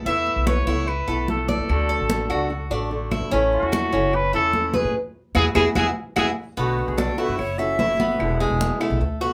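A relaxed Cuban son and guajira excerpt opens with a dark, boxy fingerpicked parlour guitar, a metallic, double-strung tres playing arpeggios up front, and a woody pizzicato upright bass, joined almost at once by bright, high-tuned congas struck with hard hands and close claves sitting in the background. A vintage-toned trumpet with light vibrato and scooped notes carries the melody up front until 6.3 seconds, with the band hitting an accent from 4.9 seconds, and then a breathy, crisp jazz flute with audible chiff plays a second line from 6.6 seconds. The group plays live together in a small room with moderate reverb, giving the cut a warm, easygoing feel.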